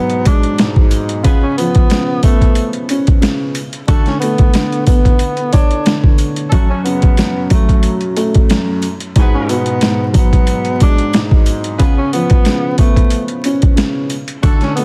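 The overdriven, sampler-style boom-bap drum kit stands out most, sitting up front with a thumpy kick, a medium-tuned snare and hi-hat, all compressed and gritty as if re-recorded in a small room. This moody hip-hop excerpt, cut from a longer piece, moves at 91 BPM in 4/4 with a light swing on the 16ths. A dark, worn baby grand piano plays accompaniment from the start, boxy and intimate with audible action noise and short sustain, over chords such as G#m7b5, C#7, Bm9/D and F#m. Above it, a breathy tenor saxophone carries a whispered, jazz-style melody in a low, narrow range, using vibrato, soft attacks and scooped notes. From 1.2 seconds a distant horn section adds punchy stabs with octave doubling and tape echo, while sleigh bells jingle faintly in the background. Studio reverb, vinyl crackle and a dense, heavily limited master give the whole a gritty sheen.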